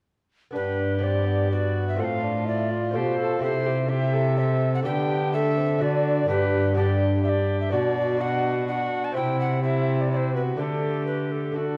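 Stately and festive, this brief excerpt of a Renaissance-style consort dance moves at 126 BPM in 3/4 in G major, with a mellow, airy alto recorder carrying the melody, its crisp chiff and vibrato heard close up. A nasal, reedy viola plays a second line and a rich gut-string cello holds the bass up front, while a bassoon with light vibrato and a bright, delicate fingerpicked lute accompany from the background, all entering around 0.5 s and playing through to 11.8 s. The consort sits in a wet church reverb, and the sound is colored by worn, warbling old cassette tape with drifting pitch.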